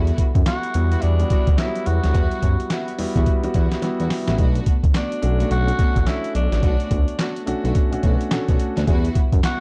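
A swung, bouncy new jack swing groove rides on a gritty, pitched-down boom bap drum kit with thumpy kick, handclaps and hi-hat, joined by an up-front sawtooth synth bass, mellow baby grand piano chords, lush bowed string stabs and a breathy, raspy tenor saxophone melody with digital delay entering at 0.5 seconds, with a drum fill at 3.8 seconds turning the harmony from Emadd9 to Bm7 in this punchy, dark-toned R&B cut from a longer piece.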